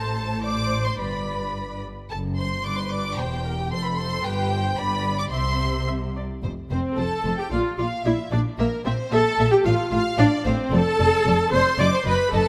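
Up front in the mix, the viola section carries a lush, vibrato-rich accompaniment through this quick, cheerful classical-period movement for string orchestra in a straight 2/4. Above it, the first violins sing the melody with a smooth, warm tone, while the second violins trace a focused second line that climbs to the same high register. Underneath, the cellos bring a dark, expressive bass coloured by portamento, doubled an octave lower by the rich, even double basses. After an opening phrase, the music moves into a new section at 6.4 s, where the harmony shifts from C major to F major before closing on a tense, unresolved chord at 11.8 s. The whole ensemble sits in the moderate reverb of a scoring stage, giving this spirited passage, cut from a longer piece, a full and polished sound.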